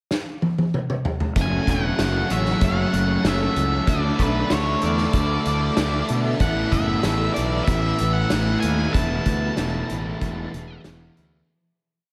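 The fuzz fingered electric bass stands out up front, bright and growly with overdrive, driving eighth notes beneath a hazy, blissful shoegaze and dream pop piece at 95 BPM in 4/4. A loose indie drum kit opens alone with a fill across the pickup bar, its punchy kick and medium-tuned snare sounding distant and roomy with a rolled-off top, before the full band enters at 1.4 seconds on a verse moving through F#m, Dsus2, Asus2 and Esus4. An octave-fuzz lead guitar carries a motif-based melody in period phrases through distortion and analog delay. In the background, a thick fuzz guitar strums dark chords with whammy-bar dips under ensemble chorus, and an overdriven semi-hollow guitar plays a riff with volume swells and reverse reverb. A shimmering vintage string machine holds sawtooth violin pads with a soft attack, while a direct-recorded clean electric guitar adds very quiet, compressed arpeggios. 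The dreamy mix is soaked in lush hall reverb, and the piece fades out from 9.0 seconds to its close.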